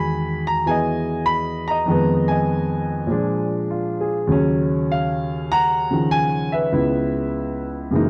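A warm grand piano plays alone, up front and natural-sounding, in a brief, swinging and smoky solo jazz fragment cut from a longer piece, moving through rich chords from Emaj9 to Ebm9 and closing on Dbm7 at 6.7 seconds, all captured with the dry, close feel of a 1970s-style studio.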